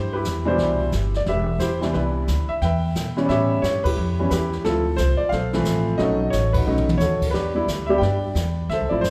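Grand piano and pizzicato upright bass open this playful, swinging jazz trio fragment, cut from a longer piece, with a brushed drum kit joining at 0.2 seconds. The piano carries the melody up front with a natural, warm tone, ranging from deep bass notes to its upper middle register. The woody, steel-strung bass also sits close, holding down the low end beneath it. Played with brushes, the drums bring dark cymbals, a medium-tuned snare and a boomy kick, along with hi-hat, crash and toms. The harmony moves through rich seventh and ninth chords, the band hits accents together at 3.8 and 6.5 seconds, and a short drum fill follows. A reverberant recital-hall ambience surrounds the trio, giving it the spacious sound of a church or concert hall.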